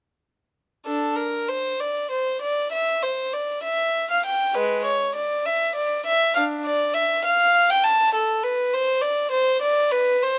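In a rubato 6/8 at 66 BPM counted in dotted quarters, this flowing, solemn baroque-style classical suite movement in D minor is cut from a longer piece and features a single unaccompanied violin from 0.9 to 10.4 seconds, its close, up-front gut-string tone nasal and reedy with an airy bow, played in period style and framed by light reverb.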